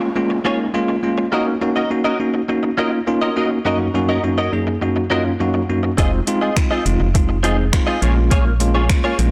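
A blown-out, overdriven mix with light reverb frames this bittersweet yet energetic dance-pop excerpt in Bb minor at 103 BPM, where a bell-like tine electric piano pumps under sidechain while a clean, twangy, direct-recorded electric guitar picks a compressed riff through an ensemble chorus, and a very quiet downlifter fades by 1.3 seconds. At 6.0 seconds a hollow, organ-like FM bass with a dark, percussive attack and a smooth, tape-warm R&B drum kit of soft kick, metallic hi-hats and finger snaps join up front, the snare softly clipped, as the chords move from Bbm7 through Gb6 and Fm7 back to Bbm7.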